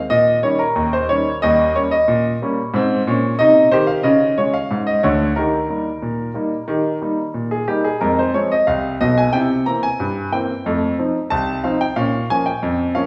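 Ragtime piano in a playful, cheerful mood, set in 2/4 with a straight feel, this short passage is cut from a longer piece. A single grand piano plays solo from start to finish across 13.1 seconds, its tone clear and present, sitting up front in the sound. The part spans a broad register, from Cb2 in the bass up to Bb5 in the treble. The harmony moves from Eb7 through Ab, Db and Eb, then turns to Fm, C7 and F7 before arriving on Bbm at 12.0 seconds. The piano rings out in a wet recital-hall reverb with a small room ambience, as if captured in a church or concert hall.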